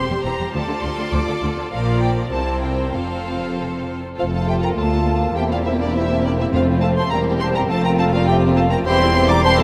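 A cheerful, spirited excerpt from a quick classical-period orchestral movement in 2/4 with a rubato feel opens on strings, rich, focused first violins carrying the melody over an intense second violin line, smooth violas, even cellos and portamento-shaded double basses, before airy flutes, a mellow clarinet and loose, vintage-toned horn chords join at 4.2 seconds, dry, articulate timpani enter briefly at 6.5 seconds, and a huge, echoing reverb washes over the whole orchestra.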